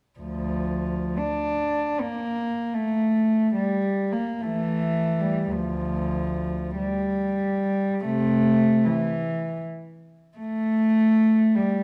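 Rubato phrasing stretches a 3/4 metre across a free, expressive tempo drifting between 46 and 81 BPM, giving this classical fragment of a longer work for unaccompanied cello a lonely, meditative character in D minor. A single bowed cello carries everything from 0.2 s to 11.8 s, ranging from D2 up to D4 and sitting up front with a soft attack. Played sul tasto, its warm tone is pure and floating, with a smooth top. The music moves from an opening statement into a contrasting second passage at 5.5 s. A wet recital hall reverb with a 1.4-second decay surrounds the instrument, and the dark, warm production deepens the sense of solitude.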